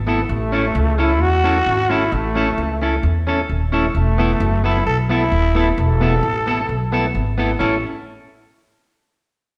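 Ska with a bouncy, joyful lift, this short cut from a longer piece puts a band in one stone room with a wet reverb that hangs around every note. A woody pizzicato upright bass sits up front from the very start, joined almost at once by a bright, clean picked electric guitar carrying the accompaniment. In the background, a lightly overdriven tonewheel organ adds clear stabs, its key click and slow rotary speaker giving the chords a gentle shimmer. At 0.3 seconds the growling trombone takes the solo melody, raspy and gritty with scooped notes and vibrato, its brilliant pop-style tone riding over the band until about 7.1 seconds. The harmony moves from A to a suspended Esus4 before settling back on A as the piece turns toward a new section at 7.6 seconds.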